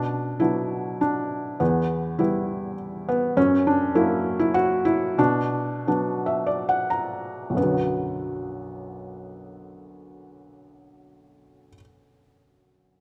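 A felt-muted upright piano opens alone on a B minor chord, setting a cool, moody tone for this lyrical classical solo piece in 3/4, cut from a longer work. The playing is rubato, moving between 65-104 BPM, and the harmony passes through E minor and F#7 before settling back on B minor at 5.2 seconds. From 3.4 seconds the pace slows, and a piano fill runs from 5.9 to 7.6 seconds, closing the first section before a second section takes over. The piano sounds soft, mellow and intimate, sitting up front with audible action noise and short sustain across its span from B1 to A#5. A moderate reverb lends the piano a sense of space, and the instrument is tuned to A4 = 438 Hz.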